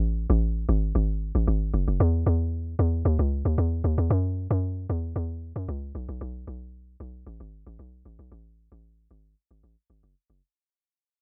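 A hollow, bouncy log drum bass sits up front in this relaxed, soulful amapiano excerpt at 114 BPM, its percussive FM tone with a noise layer striking fast and decaying mellowly across F#1 to F#2 through a drop and fade-out spanning the whole 10.4 seconds, heard dry in a rough home demo mix.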